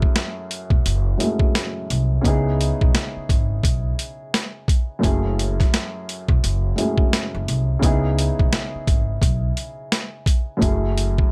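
A dark, boxy baby grand piano, carrying audible action noise, short sustain, cassette-tape grit, a filtered tone and a touch of plate reverb, opens alongside a compressed, pitched-down sampler drum kit with a thumpy kick and high-tuned snare, before a woody, growly pizzicato upright bass joins up front at 0.7 seconds in this moody boom-bap hip-hop excerpt at 86 BPM with a 60% sixteenth-note swing, circling F#m7 and C#m7 in F# dorian within a dry, close mix.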